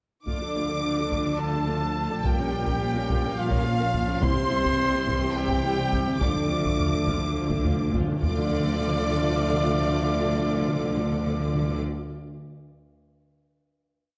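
A heavy-stick taiko ensemble drives a big drum ostinato through this dramatic, epic orchestral film score in D minor, moving in 7/8 at 212 BPM (eighths), as lush bowed violins carry the melody with a second violin section doubling it in unison and at the octave, violas rock a two-note figure beneath, mellow French horns and a distant solo trumpet double the tune an octave away, bright trombones hold sustained chords, and cellos and double basses anchor the bass, until round soft-mallet timpani roll in at 6.2 s, the remaining orchestra settles onto a final chord at 8.2 s, and the taiko falls away at 8.5 s in a moderate scoring-stage reverb.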